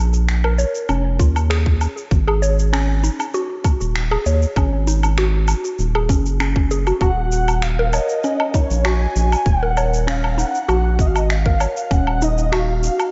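A mystical, meditative stretch of organic downtempo, cut from a longer piece, moving at 98 BPM in 4/4 with a straight feel in Eb minor. A round, deep analog bass sits up front from the start, its dark, sustained tone colored by tube saturation and sidechain pumping, while electronic shaker, finger snaps and woodblock add produced texture in a studio ambience. A woody, mellow mallet-like synth pluck spins arpeggios through chorus, phaser and analog delay, and a tight electronic kick joins at 1.2 seconds, sitting prominently in the mix. At 7.0 seconds a breathy, flute-like synth lead enters with a soft attack and vibrato, carried by ensemble chorus, cassette tape character and tape echo. The harmony drifts from Bbm to Ab7sus4 and settles on Ebm7, all within a dreamy, reverb-soaked mix with a moderate plate reverb and a rolled-off top end.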